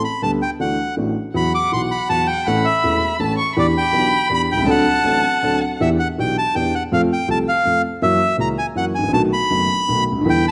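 Sultry and dramatic, this tango moves in a rubato 3/4 at 161 BPM, settling into E minor from 5.8 s in a short passage cut from a longer piece. The bandoneon carries the melody throughout, its reedy, bright, mid-forward voice sitting up front in a high register. Beneath it, a concert grand piano supplies the accompaniment, also up front, with deep bass, a slightly boxy character and long sustain. A single bowed violin adds an expressive second line from 1.3 s to 5.8 s, distant and coloured by vibrato and portamento, returning only briefly near the close at 10.3 s. The harmony drifts through suspended and seventh chords, passing from Em7 through F and F#7 to a closing B7, and the whole is set in a moderate concert hall reverb with a soft-topped, rounded sound.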